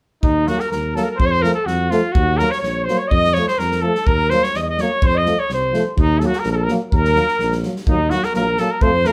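A swung 2/4 pulse at 126 BPM drives this bittersweet, restless Balkan brass band piece in Eb dorian sharp4, with a tight kick and medium-tuned snare from an airy, polished acoustic drum kit under a mellow tuba bass line up front with light vibrato. The bright cornet carries the melody up front, a warm trumpet plays a second line in the background, and from 0.5 seconds a smooth-topped trombone and a euphonium with light vibrato add accompaniment, the euphonium also set back in the mix. Cut from a longer piece, the band plays live together in one room with moderate studio reverb as the harmony alternates between Ebm and F.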